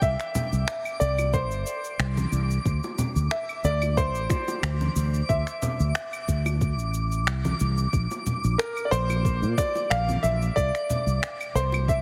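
Sunset chillout at 91 BPM in 4/4 with a light sixteenth-note swing, warm and smooth in mood, cut from a longer piece and moving through Cadd9, Dsus2, Bbadd9 and Csus2. A clear, worn concert grand piano carries the up-front melody with delay and short sustain, over a round, dark fretless electric bass and a soft, tape-tinged electronic kick, while an electronic shaker, finger snaps and claves add light detail and distant congas and bongos enter at 0.3 seconds. High above, a twinkling granular texture with an octave-up shimmer and its own reverb hangs in the background, all held in light room reverb and a heavily compressed, radio-like sound.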